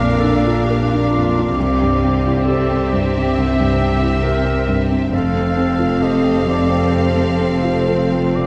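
A dark, warm scoring-stage reverb surrounds this brief cut from a longer cinematic film score, tender and uplifting in mood, moving at a rubato 67 BPM in 4/4 over a progression from Bb to C and settling on F. A lush studio violin section carries the melody with expressive vibrato, while a mellow cor anglais, a warm solo clarinet and a focused symphonic violin section in the background weave second lines beneath it. The viola section adds a clear, intense bowed accompaniment, joined by a felt-muted upright piano whose soft, intimate tone comes with audible action noise. At the bottom, a smooth, distant cello section and an expressive double bass section anchor the harmony with full, bowed bass notes. Every part sounds together throughout the roughly 8.5 seconds, giving the passage the feel of an emotional orchestral moment caught mid-scene.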